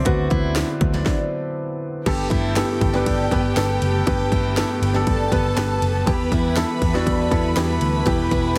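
Heavily compressed, radio-style sound in a small room gives this hopeful, uplifting piano-driven pop excerpt a dense, up-front presence. An intimate concert grand carries the accompaniment with deep bass and audible action noise, alongside a punchy, layered house drum kit with cracking snare, handclaps, hi-hat, ride and crash. A round, dark, foam-muted electric bass sits beneath, while a full-bodied jumbo steel-string acoustic guitar picks a riff complete with finger squeak. A very quiet, soft-attack string section holds sustained chords, and a jingly tambourine sits faintly in the background. The band falls into a stop between 1.1 and 2.1 seconds, and at 2.1 seconds a lush, smooth violin section enters with a second line coloured by tape echo as the harmony moves from Bm to Gadd9 and later Em.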